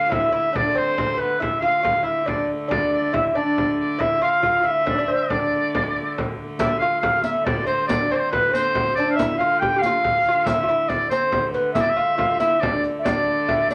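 A short cut from a longer piece, set in a wet studio reverb, this ancient and mysterious medieval dance moves at 93 BPM in a straight 6/8 in D dorian. A pure, hollow alto recorder with gentle chiff and vibrato carries the melody, while an up-front, bright, vintage-toned shawm and a delicate, fingerpicked gut-string lute play second lines over a rich, smooth hurdy-gurdy drone in the background. A deep frame drum plays throughout, and a close, dry riq with soft-handed jingles joins at 6.6 seconds as the opening phrase repeats.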